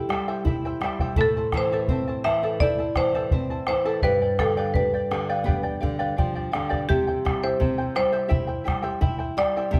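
Melancholic and earthy, this short excerpt of Andean folk moves at 84 BPM in a straight 4/4, with a woody, vintage-sounding marimba struck with hard mallets carrying the melody over a shimmering, fingerpicked charango and a fingerpicked flamenco guitar whose strings squeak under the fingers. A round bombo enters at 0.1 s and sits up front yet distant, while the chords move from C through Am and G7 back to C, all held in a moderate recital hall reverb.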